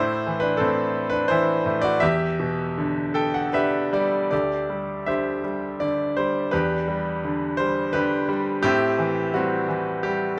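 Dark and wistful, this brief excerpt from a longer classical piece for lyrical solo piano moves in 3/4 at a rubato 76-89 BPM in E minor, tuned to A4 = 439 Hz. A single grand piano carries everything from 0.0 to 10.4 seconds, ranging from D2 to G5 with a bright, brilliant tone that sits up front and feels intimate, the action noise of the instrument clearly audible. The harmony drifts from Am to Em7, and a piano fill between 2.8 and 4.3 seconds leads into a new section built on D9sus4 before returning to Em7 and settling on Am7. Light reverb lends a modest sense of space around the close, immediate sound.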